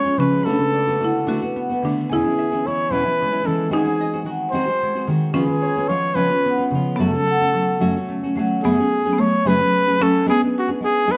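Romantic and proud, this short mariachi excerpt in F# minor moves at an unhurried 73 BPM in a straight 6/8, cut from a longer piece. A mellow trumpet carries the melody up front in a classical style, its smooth top touched with light vibrato. Beneath it, a buzzing marimba played with medium hard mallets on hardwood bars adds a dry, woody second line, while a full-bodied nylon-string guitar with fresh strings fingerpicks the accompaniment, reaching down to a deep E2. A concert harp rings out arpeggios across its span from C#3 to B5. The harmony drifts through chords such as D6, E6 and C#7 before settling on F#m at 7.0 seconds and closing on G#dim at 10.3 seconds, all captured with close, detailed microphones and light reverb.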